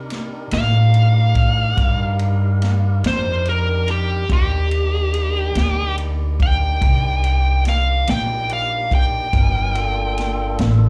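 Heard through a club PA with small-room reverb, this smoky, brooding slow blues in 12/8 is cut from a longer piece and centres on an overdriven lead guitar soloing up front with slapback echo, over a woody, dark pizzicato upright bass, a vintage drum kit of punchy kick, snare and ride with a rolled-off top and its own slapback echo, and a fat, clean tonewheel organ holding background chords through a slow rotary speaker as the harmony shifts from Cm7 to Gm7 at 9.3 seconds.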